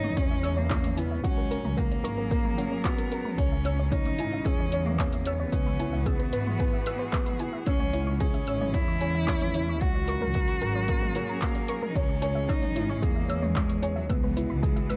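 A dark, close-sounding mix with little reverb and a muffled top end sets the tone for this cinematic, moving piece of piano and strings electronica, cut from a longer work. At 112 BPM in a straight 4/4, in C# dorian, a punchy, overdriven electronic kick sits up front from 0.2 seconds, over a layered deep house kit of handclaps, hi-hat and toms that plays from the very start with its own overdrive. Underneath, a bowed chamber double bass section plays the bass line with a soft attack and light vibrato, pumping against the kick, while a dark string quartet sustains chords in the background with expressive vibrato and portamento. A felt-muted upright piano carries a mellow, intimate riff, its action noise audible and its notes short, and a soft, round, warbling pluck adds detuned arpeggios in the background through chorus and tape echo. Over it all, a single warm cello sings a smooth, even melody as the harmony moves through C#m, F#, and E.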